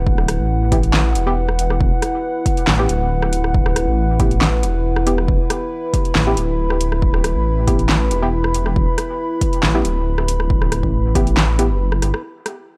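A dark, detuned sawtooth bass rumbles up front from the opening second, its beating low tones held long and thickened by tube saturation, anchoring this heavy, cavernous deep dubstep cut in E minor at 138 BPM with a half-time feel in 4/4. Beneath it sits a punchy, overdriven electronic kick, while a layered deep house kit adds a fat snare, metallic hats, handclaps and rim clicks, also pushed forward with overdrive. A moody analog pad built from square, saw and triangle waves with a sub octave sustains chords with a slow attack, a long release, a moving notch and chorus, starting on an E5 chord. From 0.7 seconds, a muted, filtered dub chord stab plucks short, mellow hits that trail off into dub echo. The whole passage plays as a drop, closing on a drum fill at 12.0 seconds, captured dry and gritty on hardware with little reverb.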